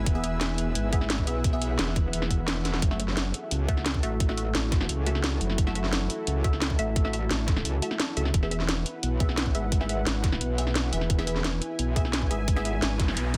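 Tense and dark, this excerpt of technical drum and bass runs at 174 BPM in F# minor, opening straight into a drop where a tight, up-front electronic kick and a kit of cracking snare and metallic hats drive beneath a saturated, wobbling FM bass with overdrive and chorus. A moody, detuned analog pad pumps against the sidechain while muted, filtered dub chord stabs carry phaser and dub echo, and an ethereal airy pad drifts in the background until 2.8 seconds, when a drum fill leads the harmony from E to F#m7. The dense, heavily limited mix stays dry, returning to E at 8.3 seconds before an electronic noise sweep enters at 13.0 seconds.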